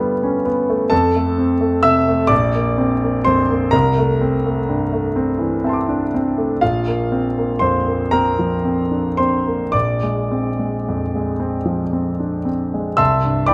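A clear concert grand piano plays alone throughout this dreamy, luminous fragment of impressionist classical music, cut from a longer piece. It moves in a slow 6/8 at roughly 35-44 BPM counted in dotted quarters, with a rubato feel, and is tuned to A4 = 441 Hz. The piano spans Bb1 to E6, and its deep bass grounds rich harmonies that drift from G9 through F and Bbadd9 to C13, return to Bbadd9 at 6.6 seconds and reach Bb9 before settling on C6 at 13.0 seconds. Close, detailed microphones keep the instrument present and up front, catching an intimate, polished tone along with audible action noise. A moderate recital hall reverb with a 1.7-second decay surrounds the playing with a gentle sense of space.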